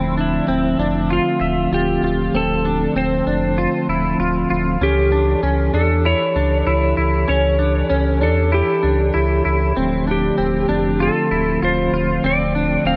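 Haunting and melancholic, this dream pop excerpt drifts in a straight 4/4 over a slow turn from Dm7 to A7/C# and back, soaked in a huge ambient reverb. A soft, flute-like tonewheel organ holds sustained chords through a fast rotary speaker. A bright, twangy electric guitar picks compressed arpeggios through analog chorus and tape echo, and a deep sine sub bass with an octave sits up front beneath them. At 0.2 s a clean lap steel enters with a fingered slide melody in volume swells, trailing its own tape echo.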